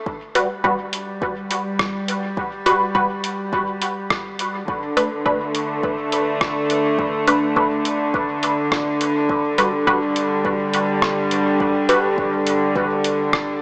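Hazy and meditative, this ambient dub fragment in B minor moves at 104 BPM, with a clear, floating string section holding soft-attack bowed chords up front from the opening second. A deep electronic kick and a muffled, pitched-down sampler-style kit of hi-hat and rim click sit beneath, both bathed in studio reverb, with dub echo on the kit, while a nasal, detuned sawtooth chord stab with filter pluck, phaser and dub echo enters at 0.4 s and plays until 12.1 s. The harmony moves to a rootless Bm7 at 4.7 s and then to G5, all heard through a huge ambient reverb and a small-speaker sound.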